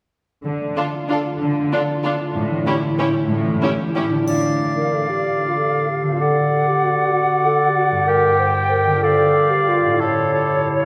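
Sweeping and bittersweet, this excerpt from a classical orchestral ballroom waltz in D minor moves at 188 BPM in 3/4 with uneven, rubato beats, as an up-front, ringing concert harp plays arpeggios throughout while a distant, even cello section holds the bass and violin and lush viola sections carry the melody, second line and accompaniment until 4.0 seconds. At 4.1 seconds a dark, roomy clarinet enters, followed at 4.3 seconds by a pure silvery flute and a smooth-topped oboe, and together they take over the second lines, joined briefly by a bright triangle. The whole ensemble sits in the long, wet reverb of a church or concert hall.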